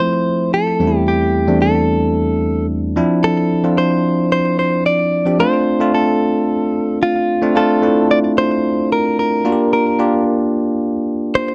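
A dry, close 1970s-style studio sound with a moderate booth ambience frames this moody, nostalgic pop passage at 111 BPM in a straight 4/4, cut from a longer piece. A bright, barky tine electric piano sits up front with bell-like accompaniment, moving through chords like Fmaj7, Dm9 and F6. A clean, picked electric guitar, recorded direct and compressed, carries the melody with a slapback echo, and the harmony shifts at 7.6 seconds toward Dm7 and Bb6.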